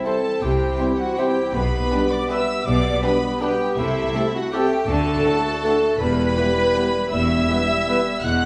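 A dark, woody viola section with lush vibrato plays the accompaniment in this sweeping, elegant classical excerpt in 3/4 at 161 BPM, its beats uneven and rubato, alongside a present bassoon, while a floating violin section sings the melody high above, with a second, very quiet violin section adding a line beneath. Cor anglais, a distant clarinet and an airy, hollow small flute group weave further lines, while a tight French horn section and a smooth-topped trombone section hold sustained chords and a solo trumpet adds very quiet stabs. Intimate bowed double basses and background cellos enter at 0.4 seconds to carry the bass through a C, G/B, Am7/C, D and Em progression, all inside a stone room reverb.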